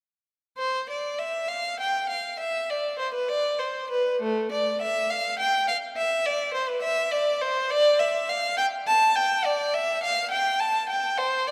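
A lone bowed violin begins at 0.6 s, its rich, vibrato-laden tone sitting up front in a reverberant church acoustic. This is a baroque-style suite movement for unaccompanied violin, introspective and solemn in mood, moving in 6/8 at 69 beats per minute counted in dotted quarters. The single player shapes the line with rubato, so the pulse breathes freely rather than ticking strictly. The playing is smooth and even, ranging from A3 up to A5, while the church reverb adds a long, hallowed tail of about 2.8 seconds around each phrase. This short excerpt from a longer piece holds on the solo violin throughout until it stops at 11.5 s.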